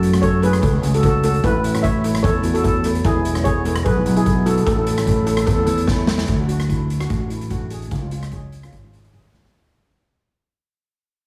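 Sunny and bouncy, this calypso excerpt at 149 BPM in A major sets a mellow, dark lead steel pan played with soft rubber sticks over a shimmering double-seconds pan in the background, a direct, amped fingered electric bass, an up-front, boomy street-band drum kit with a medium-tuned snare and rim clicks, and a very quiet, dry cowbell. The lead pan drops out at 5.7 s, and a drum fill at 5.9 s leads into a closing section that fades out from 6.3 s, all carried by a heavily compressed, radio-like sound with light reverb.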